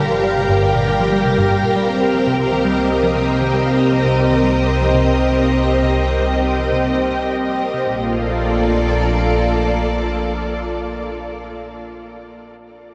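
In a straight 4/4 pulse, this luminous, cosmic fragment of sequencer-driven space music sets an up-front, lush string machine ensemble holding bright sustained chords with chorus and shimmer reverb until 11.4 seconds, while a detuned, wave-folded analog drone bass evolves underneath until 9.3 seconds. In the background, a juicy, squelchy blip pluck riff with phaser, tape echo and shimmer sounds until 8.1 seconds, its arpeggio fading out as the harmony moves from Gm7 and Cm7 to Bbmaj7. The whole sits in a huge, wet reverb with the warble and pitch drift of worn cassette tape.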